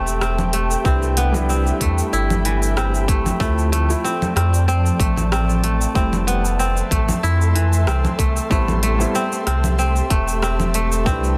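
Opening on a ringing, fingerpicked kora playing delayed arpeggios over a round, pumping sine sub bass and a detuned, chorused background pad, this meditative, earthy, gently swung organic downtempo excerpt soon adds a faint, breathy wind-like texture and a tape-warm kit of congas, hi-hat, rim click and shaker, then at 0.8 s a tight electronic kick and a soft, felt-muted upright piano with audible action noise and delay, the harmony moving through Am7, Cmaj7, Dm7 and Fmaj7 in a lightly reverberant, dense, heavily limited mix.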